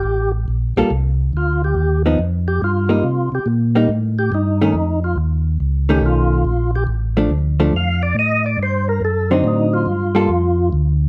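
Soulful and bluesy, this swinging jazz clip, cut from a longer piece, puts a fat, lightly overdriven tonewheel organ up front on the melody, its percussive attack and key click colored by chorus vibrato and a slow rotary speaker, while a second round, dark tonewheel organ carries the bass with the same vibrato and rotary treatment. A clean, picked hollow-body electric guitar with a compressed tone adds accompaniment from 0.8 to 10.3 seconds as the organ solo moves through changes such as Cm7, Faug7 and Bbmaj7 before a D7b9. A moderate club reverb lends the trio its ambience.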